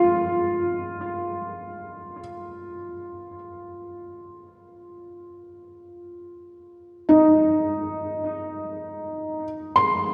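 Set in free time, this brief ambient passage is cut from a longer piece and carries a spacious, melancholic mood. A felt-muted upright piano plays solo from 0.0 to 10.1 s, ranging from Eb4 up to C6 in standard A4 = 440 Hz tuning. Its tone is soft, mellow and intimate, sitting up front in the mix, while analog chorus and analog delay add shimmer and echo to its notes. A lush hall reverb with an RT60 of 3.1 s soaks the whole mix, giving it a dreamy atmosphere.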